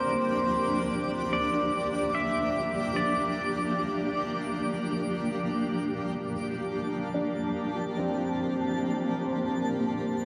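Spacious and melancholic, this ambient fragment sets a clean pedal steel guitar melody, sliding with fingerpicks and volume swells through tape echo until 5.9 s, over a cloudy, detuned granular pad that sits bright and up front, a soft felt-muted upright piano whose intimate arpeggios carry audible action noise, and a sparkling granular shimmer high above, all bathed in a huge, wet reverb as the harmony moves from Gm7/D to Gm9 at 6.3 s.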